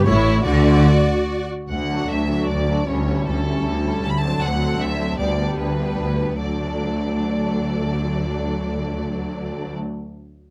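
Close, detailed microphones and light reverb frame this stormy, restless excerpt from a quick classical-period movement for string orchestra in D major and 3/4 at 137-158 BPM: a rich, focused violin section carries the bowed melody with vibrato over a lush, smooth-topped second violin line and an expressive viola accompaniment, while a distant cello section and a soft-attacked double bass section share the bass, and the rubato feel slows from 3.4 to 6.4 seconds as the harmony moves from A7/D through D7 and G/D to settle on D.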